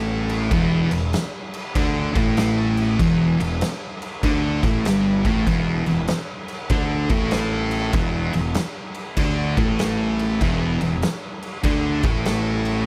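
Two thick, picked fuzz guitars open this sludgy, heavy stoner and doom metal excerpt on a single E minor chord, one up front and one further back, alongside a growly, overdriven fingered bass. At 0.3 seconds an oversized, low-tuned acoustic drum kit joins with a punchy kick, a medium-tuned snare and dark crash cymbals, sitting gritty and saturated in a big, pumping room. The riff moves at 97 BPM in 4/4 with a loose swing on the eighth notes.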